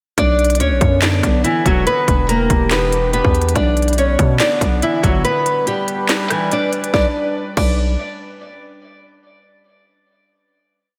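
A dark, fingerpicked nylon-string guitar loop doubled in octaves opens this brooding, eerie trap piece at 142 BPM in a half-time feel, arriving with a heavy, distorted 808 bass that slides between long sub notes and an up-front electronic kit of hard-clipped kick, sharp snare layered with claps and crisp hi-hat rolls, while a warbly, nostalgic lo-fi pad with chorus and phaser fades in at 0.7 s under Bmadd9 and Em7 chords, the kick drops out from 5.2 to 6.9 s, and a final chord rings out at 6.9 s in a dreamy, reverb-soaked mix.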